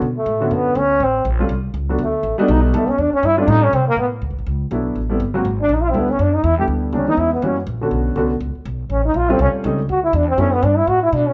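A brisk swung 4/4 drives this sophisticated yet relaxed small-group jazz passage in the swing and bop tradition, taken from a longer performance. A breathy trombone carries the melody as a soloist from start to finish, its whispered, vibrato-laced tone sounding intimate despite a soft attack and a roomy distance. Beneath it a woody, thumpy pizzicato upright bass and a dark, mellow baby grand with audible action noise, all heard live together in one large studio with moderate reverb, move through rich extended and altered chords such as Bm9, A7alt and D69.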